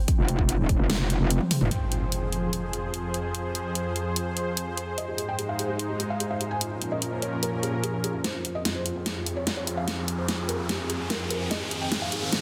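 Set at 147 BPM in 4/4 with a half-time feel, this heavy, chaotic wobble dubstep passage in F minor, cut from a longer piece, opens straight on a drop. A punchy electronic kick hits briefly at the very start alongside a layered dubstep kit of hi-hat, toms and a huge snare, all up front, while two metallic, aggressive FM wobble basses snarl low around F1, one saturated and the other distorted, both thickened with chorus and overdrive. After a drum fill, an impact lands at 1.7 seconds and the harmony moves through F minor, A-flat and B-flat minor under a lush, detuned supersaw pad that holds sustained chords with sidechain pumping and a low-pass filter. From 5.0 seconds a soft, felt-muted upright piano carries the melody with a delay, its mellow, vintage tone bringing audible action noise and an intimate contrast to the aggression around it. The closing stretch becomes a build-up with another drum fill, a filter sweep and a riser that starts at 9.0 seconds, all set in a moderate hall reverb and a dense, heavily limited modern master.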